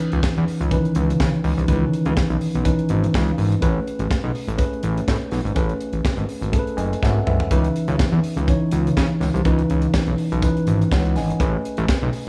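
A close, nearly reverb-free studio sound frames this danceable, driving disco excerpt, where a mellow, clean tine electric piano plays C#m9 and Amaj9 chords over a dry, airy, polished funk drum kit with a high-tuned snare and tight kick, while a fat, saturated, detuned sawtooth analog bass with an evolving filter pluck sits slightly louder up front, and a brief electric piano fill at 6.5 seconds overlaps a drum fill at 7.0 seconds.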